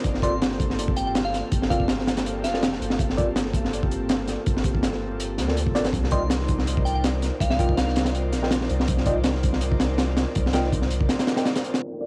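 Dark and raw, this jungle-flavoured drum and bass cut is driven by a crunchy, saturated breakbeat kit with a punchy kick and high-tuned snare sitting up front, over a deep, round dub sub bass and a breathy, detuned pad roughened by sampler grit and tape. A clean tine electric piano adds stabs through phaser and dub echo, while a crystalline FM bell with tremolo warbles in the background in phrases starting at 0.2 and 6.1 seconds. A faint wind-like noise texture drifts in at 11.8 seconds, and the whole home-cassette sound carries vinyl crackle, a muffled low-pass tone and light reverb.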